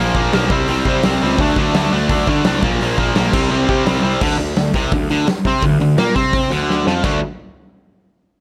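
A double-tracked, overdriven electric guitar sits up front with a bright, picked riff over power chords in this urgent, aggressive punk rock excerpt, cut from a longer piece and played in a straight 4/4. Beneath it, a growly fuzz electric bass holds down the low end with a picked, direct-and-amped bite, while a big acoustic drum kit with a punchy kick, medium-tuned snare, hi-hat and bright crash cymbals drives the whole stretch. The chords give way at 4.2 s to an unharmonized passage, and a drum fill at 6.7 s leads into a D5 chord at 7.0 s, all captured dry.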